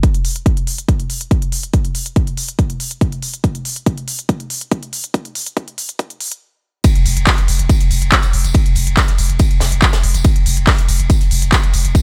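A heavy, layered electronic kick sits up front in this dark, intense stretch of driving peak-time techno, joined by a techno kit of handclaps, smooth sidechain-pumped hi-hats and ride cymbal through a filter-swept build-up that halts at 6.4 seconds. The drop lands at 6.8 seconds, bringing in an acoustic funk kit of hi-hat, high-tuned snare and tambourine in the background. At 7.0 seconds a thick, mellow overdriven sub bass follows, pumping under a dry mix.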